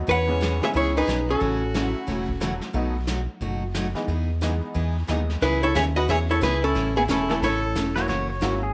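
Playful and swinging, this short cut of country western swing moves at a brisk 180 BPM in E major, with a swing feel on the eighth notes. A miked and amplified archtop guitar carries the melody up front with a clean, compressed, hollow-body tone, joined in its two phrases by a clear fiddle playing a second line with a biting, nasal edge and an airy bow. Underneath, a round, deep analog bass holds the low end, while a jangly, detuned honky-tonk upright piano and a bright, full-bodied acoustic guitar, set back in the background with audible finger squeak, fill out the accompaniment. A vintage brush drum kit with a tight kick and rolled-off top keeps time in a small, pumping room. The harmony moves from E6 through A6, B7 and Emaj7 into C#m7, A and F#7, and a pedal steel guitar arrives at 8.0 seconds with a slide line and volume swells just before the cut ends, all set in a moderate plate reverb.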